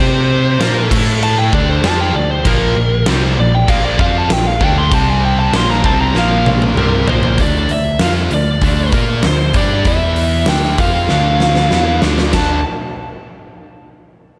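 A biting, overdriven lead guitar with slapback echo and analog delay solos through the first 7.4 seconds of this menacing, heavy hard rock excerpt in D minor at 97 BPM, over a growly, punchy picked bass, a huge up-front arena drum kit entering at 0.6 seconds with a fat snare, punchy kick and bright cymbals, a cranked stack guitar with slapback echo and an overdriven hollow-body semi-hollow guitar grinding riffs in the background, and a very quiet double-tracked distorted guitar that drops out at 7.4 seconds, all filling a big arena sound with lush hall reverb and drum fills leading into each new section.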